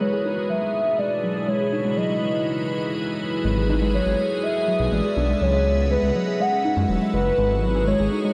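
Intricate and eerie, this IDM piece moves at 122 BPM in a straight 4/4, set in G# phrygian and tuned slightly flat to A4 = 438 Hz. A warbling, nostalgic lead carries the melody with lush chorus, tape echo and vibrato, its wave-folded tone staying mellow. Beneath it, an icy, crystalline glass pad holds airy sustained chords with chorus and built-in reverb, while a dusty, lo-fi pluck spins evolving arpeggios through a filter sweep and analog chorus. After a break at 2.5 seconds, a deep, rumbling detuned saw bass enters up front at 3.4 seconds, its unison voices beating against each other. The harmony cycles through minor seventh, ninth and eleventh chords such as Bm7, C#m11 and G#m11, and the whole has a dry, gritty hardware sound with light digital ambience, cut from a longer piece.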